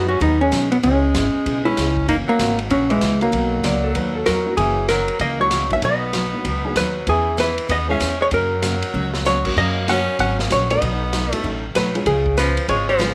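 A dark, clean hollow-body jazz guitar carries the melody up front, its picked, compressed tone leading this cheerful, down-home western swing excerpt at a brisk 192 BPM with a swung eighth-note feel. Beneath it, a bright tenor saxophone plays a jazz-style second line with vibrato and a soft attack, while a clean, fingered lap steel slides in with its own brief phrase from 3.6 to 4.5 seconds. The detuned, jangly honky-tonk upright piano and a full-bodied dreadnought acoustic guitar sit in the background as accompaniment, and a woody, thumpy pizzicato upright bass with gut strings anchors the low end. A vintage drum kit with a punchy kick, medium-tuned snare and dusky cymbals adds a fill at 8.9 seconds. The harmony moves through seventh and sixth chords such as G#m7, Bmaj9 and E6, and a moderate echo-chamber reverb gives the whole band a roomy, old-fashioned glow.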